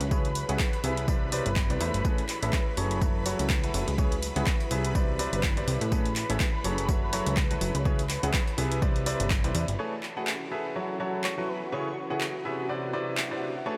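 A bright, brilliant baby grand piano sits up front with a riff running from 0.1 s, its audible action noise and long sustain shaped by a low-pass filter, delay and sidechain pumping, in this joyful, euphoric piano house cut at 124 BPM with a 16th-note swing. Beneath it, an overdriven electronic kick drum punches hard from the front of the mix, joined by a punchy analog drum machine's overdriven handclaps and hi-hat and a very quiet, gritty, pitched-up breakbeat kit adding tape-warm hi-hat, snare and tambourine. A plucky, funky analog bass with a fast attack and ring-modulated edge pumps beneath the chords of C#m7, Cmaj9, Amaj9 and F#m7, while a silky, string-like analog pad holds sustained chords and a deep, moody detuned ambient pad adds a sustained texture in the background, both breathing with the sidechain. Between 9.4 and 9.8 s the kick, breakbeat kit and bass drop away in turn. At 9.8 s a filter sweep opens on the string pad, and a soft, airy lead enters with a mellow chorused, delayed line between A4 and C#5. 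The whole mix is soaked in a huge, dreamy reverb with a long tail.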